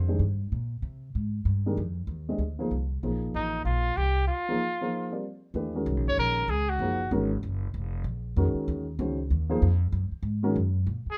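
Swinging at 191 BPM in 4/4, this cool, spiritual modal jazz fragment sets a woody, thumpy pizzicato upright bass under a dark, mellow grand piano, while a clear, punchy trumpet with scooped notes and light vibrato plays a forceful solo from 3.4 to 7.1 seconds, across a brief break and into Eb dorian at 5.5 seconds, in a light reverb.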